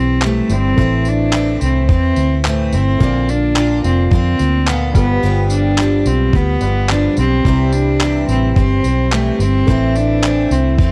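Heartfelt and sunny, this dry, close 1970s-style acoustic pop passage sets a pure, floating bowed cello melody up front over a bright, double-tracked steel-string acoustic guitar, a round, dark muted electric bass, a very quiet, woody upright piano, and a gritty sampler-style soul drum kit of thumpy kick, handclaps and tambourine that enters at 0.2 seconds.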